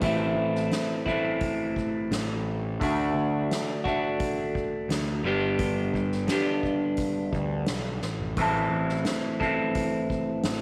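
Psychedelic rock with a mysterious, dark mood, moving at 86 BPM in a straight 4/4 and centred on A dorian, this short section is cut from a longer piece. An electric guitar through a small old amp carries the riff throughout, its bright, twangy, slightly broken-up tone sitting up front and coloured by a phaser. Beneath it, a picked electric bass with overdrive and fuzz holds the low end, sounding warm, direct and amped. A drum kit played with soft mallets supplies a hall-like, natural backdrop of boomy kick, medium-tuned snare, toms, hi-hat and dark crash cymbals, with a brief fill at 8.0 seconds. The harmony cycles from Am through D and G before returning to Am at 8.4 seconds, all within light studio reverb.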